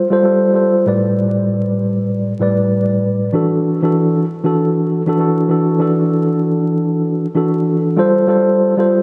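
Hip hop with a dark, gritty mood, this short excerpt, cut from a longer piece, features a mellow tine electric piano playing solo from 0.0 to 9.0 seconds in a swung 4/4 feel. The piano sits up front, its clean, warm tone colored by cassette tape and narrowed by high-pass and low-pass filtering so it sounds as if heard through built-in speakers. A diffuse ambient delay trails behind its phrases, which range from A2 to D5. Suspended ninth chords carry the harmony, moving from G9sus4 to A9sus4 at 0.9 seconds and settling on E9sus4 at 3.3 seconds before returning to G9sus4 at 8.0 seconds. The dreamy mix is soaked in a wet plate reverb and dusted with vinyl crackle, giving the passage a hazy character.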